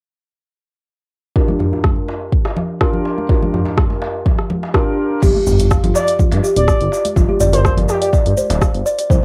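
Warm and earthy, this afro house excerpt moves at 124 BPM in a straight 4/4 in G minor, cut from a longer piece and carrying the light reverb and soft haze of a home cassette recording. At 1.4 seconds a tape-tinged electronic kick sits up front beside a distant, clay-shelled darbuka, ringing, high-tuned congas join at 1.5 seconds to round out the hard-handed hand percussion, and a deep house kit with dark hats, crash and rim clicks arrives at 1.8 seconds. Over a Gm7 chord, a felt-muted upright piano plays mellow, intimate stabs that pump with the sidechain and pass through a filter sweep, cassette grit and analog delay. At 5.2 seconds the harmony shifts to G7(no3) as a woody, hollow kalimba takes over with short, thumbnail-plucked arpeggios under its own filter sweep, joined by a smooth, detuned sawtooth-and-square synth bass gliding with portamento and a grainy tube shaker. From 6.0 to 8.1 seconds an expressive portamento lead sings a sustained, soft-attack melody with chorus and vibrato, colored by tape and delay.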